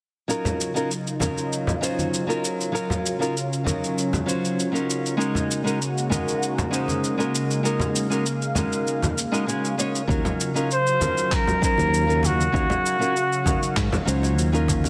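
A vintage, vibrato-tinged flugelhorn with tape echo carries a brief jazz-style solo from 10.7 seconds in this smooth, wistful sunset chillout excerpt, over a dark, fingerpicked nylon-string guitar with tape echo, a thick, detuned sawtooth pad with chorus and phaser, gritty sampled shaker and handclaps, and ringing, hard-hand congas and bongos, with a growly fretless bass and a punchy, layered electronic kick entering at 10.1 seconds, the whole set in a lush hall reverb and a dense, heavily limited master.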